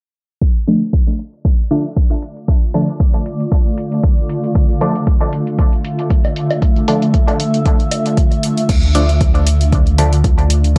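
Meditative and hypnotic, this dub techno fragment rides an overdriven, up-front kick and a layered deep house kit with filtered hats and crash, while a muted, phased chord stab with dub echo arrives at 0.7 seconds and filter sweeps run across the drums, stab and pad until 8.7 seconds. A blurred, evolving granular cloud pad pumps beneath from 2.3 seconds, and an overdriven woodblock with dub echo sits in the background between 5.2 and 8.0 seconds. The round, soft sub bass enters at 8.7 seconds on D, all within a dry, gritty, cassette-saturated hardware sound.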